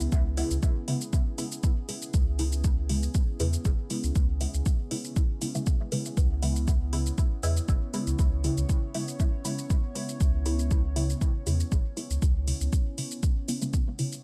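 A hazy, deep dub techno excerpt at 119 BPM in C# minor, dry in the room, where an up-front, tape-warm layered kick and metallic analog shaker and hi-hat carry a lightly swung 4/4 under a round, soft triangle-and-square sub bass and a muted, detuned sawtooth chord stab with phaser, dub echo and a filter sweep, both with sidechain pumping, while a dark, warbling vintage pad with chorus, built-in reverb and sidechain pumping holds a sustained C#m7 behind them, until the bass stops at 12.7 seconds.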